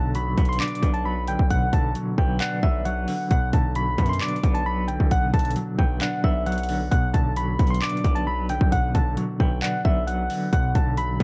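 Melancholic and eerie, this half-time trap excerpt in B minor moves at 133 BPM over a single Bm chord, with soft, round electric-piano-like synth keys carrying a high, mellow melody through a chorus effect. A clean, hollow-bodied semi-hollow electric guitar sits up front with tremolo, while a heavy, saturated 808-style bass growls beneath and a trap drum kit enters at 0.1 seconds with a hard-clipped kick, metallic hi-hats and handclaps. The dry mix is coated in a worn, warbling cassette-tape character with drifting pitch.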